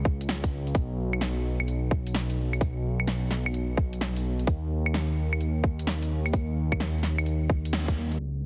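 Future garage with a wistful, melancholic mood, cut from a longer piece and swung on the sixteenths, built on a dark detuned saw bass that rumbles deep and up front, its beating unison tone roughened by tube saturation and pumping against the sidechain. A tight, layered electronic kick drives from the start, while a garage kit of woody snare, metallic hats, claves and crash cymbal sits further back, and the whole band hits an accent at 7.7 seconds. The sound is dry and heavily compressed, like radio through cassette tape, dulled by a low-pass filter.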